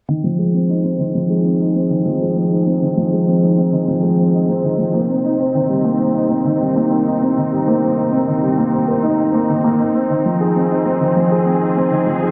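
A straight 4/4 pulse at 99 BPM carries this melancholic, hypnotic electronica in F minor, moving from Fm7 to Cm7 at 4.9 seconds and back to Fm7 at 9.8 seconds, cut from a longer piece. A soft, felt-muted upright piano sits up front with an intimate, mellow riff touched by delay, while a bright studio string section holds bowed sustained chords with vibrato, close and intense yet lower in the mix. The whole passage is bathed in a wet scoring-stage reverb and a low-pass filter, with a filter sweep running from start to finish.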